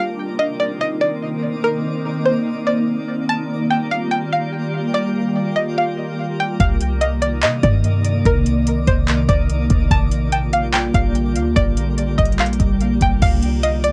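A hazy, cassette-worn home recording of melancholic, ethereal cloud-rap in C minor at 145 BPM with a half-time feel, where a twangy, string-like resonator pluck carries the melody over a glassy FM pad with phaser and sidechain pumping and a faint twinkling granular shimmer, cycling between Cm9 and Bb6 until a clean, boomy 808-style bass and a booming analog drum machine with deep kick, metallic hats, handclaps and crash enter at 6.6 seconds in this fragment cut from a longer piece.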